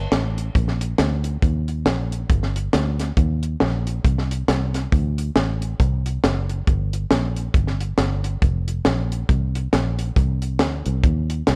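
A dry, up-front acoustic funk drum kit drives this short uptempo gospel piece, entering at 0.1 seconds with hi-hat, a high-tuned snare and a tight kick. The tempo sits at 138 BPM in 4/4 with a swung eighth-note feel, and the music is set in G minor with a soulful, solemn mood. A fingered electric bass opens the piece at 0.0 seconds, sounding dark and round, with a foam-muted tone and transformer saturation that gives it a direct, amped presence close to the listener. It holds to a low range, from F1 to Eb2, while both parts carry on together to the end at 11.6 seconds. The whole recording has the worn, warbling character of old cassette tape, with a drifting pitch and a light reverb around the sound. Tuned slightly below concert pitch at A4 = 439 Hz, the passage is cut from a longer piece.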